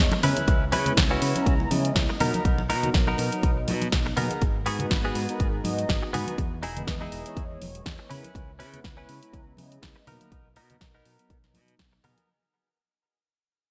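A punchy, layered electronic kick drives this sensual, cosmic nu-disco fragment at 122 BPM with a 16th-note swing, alongside an up-front house kit of hi-hat and snare in gated reverb, thick-skinned congas set back in a live room, a bright fingered electric bass, a twangy, clean direct guitar riff through subtle chorus, low-pass filter and digital delay, and round, detuned sawtooth synth brass with filter sweeps, chorus, sidechain pumping and delay, all moving over C#m7, Bmaj7, G#m7 and Emaj7 in a glossy 1980s-style digital production that fades out across its 12.3 seconds.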